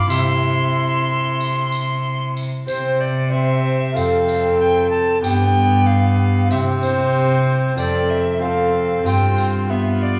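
A bright, chiffy alto recorder leads this stately, courtly renaissance-style consort dance in C major at 94 BPM, with a dark, distant gut-string violin on the second line, a close, reedy viola and a ringing harp in the background filling in the accompaniment, an up-front rich cello holding the bass, and a jingly tambourine from 0.1 to 9.7 seconds, the whole consort set in a wet, churchlike reverb as the harmony moves from C through F and G to a closing G7.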